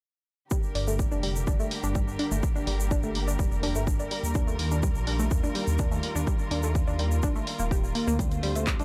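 Melodic techno at 125 BPM in G minor, dark and dramatic, cut from a longer piece: from 0.5 seconds a punchy, tape-warm electronic kick sits up front with a grainy egg shaker, while a nasal, round analog pluck spins arpeggios through chorus, phaser and analog delay over veiled, con sordino string chords, both pumping against the kick. At 0.8 seconds a deep, rumbling detuned saw bass joins with its own pumping, along with a house kit of handclaps and hi-hat, as the harmony moves from Gm to Ebadd9 and touches Dm7 near the close. The sound is dry and gritty, a hardware recording with little reverb.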